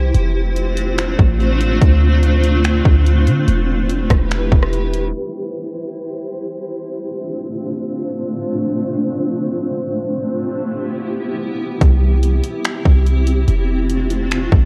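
A blurred, detuned granular cloud pad opens alongside a deep, boomy sine 808 bass in this floating, blissful cloud-rap excerpt at 144 BPM in a half-time 4/4 feel in C major, with a trap kit of hard-clipped kick, bright hi-hats, finger snaps and rim clicks joining at 0.1 seconds, then drums and bass dropping out around 5 seconds while a filter sweep runs over the pumping, reverb-soaked pad chords moving through C, F6 and Em, before both return at 11.8 seconds, all wrapped in the warbling pitch drift and low-pass dullness of worn old cassette tape.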